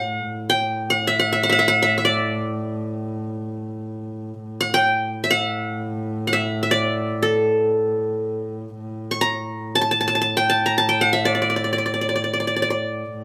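Stately and warm, this fragment of a Turkish makam ensemble piece in A hicaz unfolds in free time, with a bright-edged, plectrum-plucked qanun carrying the melody up front through a phrase heard twice, the second time from 8.8 seconds, over a soft, intimate drone on A from a single bowed double bass played sul tasto with an airy bow and light vibrato, all set in a wet studio reverb.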